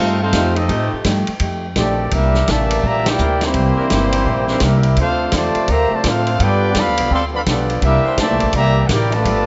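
A lively swung eighth-note feel drives this energetic big band jazz excerpt, where a tight, present trumpet section carries the melody over a looser trombone section's second line, a woody pizzicato upright bass sits up front, and a very quiet picked steel-string acoustic guitar adds accompaniment with the odd finger squeak; a vintage drum kit with dark cymbals and a punchy kick enters at 0.3 seconds, a distant, roomy saxophone section holds sustained chords from 0.7 seconds, and the band hits an accent at 3.0 seconds, all in a light reverb.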